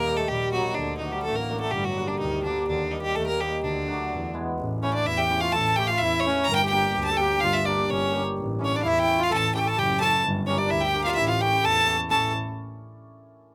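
Klezmer at 127 BPM in a straight 2/4, this bittersweet, festive excerpt is cut from a longer piece and settles into A phrygian dominant from 4.6 seconds, after an opening passage moving through Eb, D and G minor chords to an E7. A bright, intense violin carries the melody up front, one close player bowing with vibrato and an airy tone that climbs as high as Bb5. Beneath it, a reedy single-reed accordion with dry tuning plays a clear second line, while a hammered cimbalom adds shimmering, ringing accompaniment touched by a slapback echo. A dark double bass, bowed sul tasto with a soft attack and light vibrato, gives the low end an intimate, close presence. The later passage sways between A and G minor, and the whole group sounds as if played outdoors, with little reverb.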